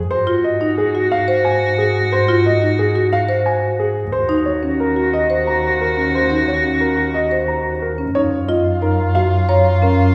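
In a reverberant recital-hall acoustic, this propulsive, bright fragment of minimalist classical pattern music moves at 179 BPM in 6/4, with an intimate grand piano carrying the melody over audible action noise, a punchy soprano saxophone holding a narrow second line with light vibrato, a bowed double bass gliding through the low register with soft-attacked portamento, and close-miked, woody marimba arpeggios cycling through Ab7(no3) and Ebm7 before the harmony shifts to F#maj7 at 8.1 seconds.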